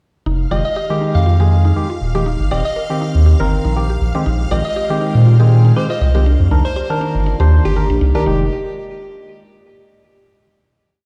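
This deep house piece moves at 120 BPM in 4/4 with a light 16th-note swing, set in F dorian with a smooth, warm mood. A round, deep analog bass sits up front with a dark, syncopated riff. Behind it, a woody mallet-like synth pluck runs a 16-step arpeggiated sequence through chorus, cassette tape coloring and delay. A tine-like FM thumb-piano-style pluck carries the melody in short phrases, and a hollow, nasal organ stab plays dotted-rhythm chords in drop-2 voicings. High above, a shimmering vintage string machine holds a bright high note, and from 4.5 seconds an airy, breathy pad adds slow-attack sustained chords in the background. The harmony cycles through Fm9, Eb6, Bb13sus4 and Cm9 before settling on a rootless Fm9 at 8.3 seconds, heard in a digital ambience with stone-room reverb, like a big sound system playing in a bare room.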